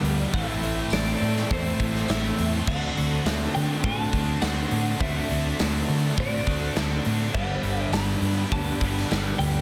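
Up-front acoustic drums with a tight kick and medium-tuned snare drive this dreamy, hazy shoegaze and dream pop excerpt at 102 BPM, joined by a round, punchy, foam-muted electric bass and, from 0.9 seconds, a very quiet jingly tambourine. A bright, twangy twelve-string electric guitar carries the melody through tape echo, while three picked guitars sit in the background: a dark fuzz riff with lush chorus, a double-tracked overdriven part, and a compressed overdriven part with reverse reverb. A mellow, very quiet organ-like ensemble sustains chords over Am7, D7 and Gmaj7, all in a dense, heavily limited modern master with light reverb.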